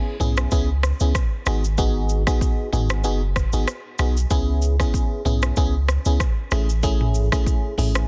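A swung 16th-note afrobeats groove at 95 BPM in 4/4 sets a hypnotic, mellow mood in C# minor. The up-front electronic afro-pop drum kit brings a deep kick, metallic hi-hats, rim click, shaker and toms, while a punchy sine sub bass with a pitch-drop attack holds the low end. Above them, a glassy, bell-like FM electric piano with a noise layer and chorus moves through C#m7, G#m7 and Amaj7 in this short cut from a longer piece, set in digital ambience under a dense, heavily limited modern master.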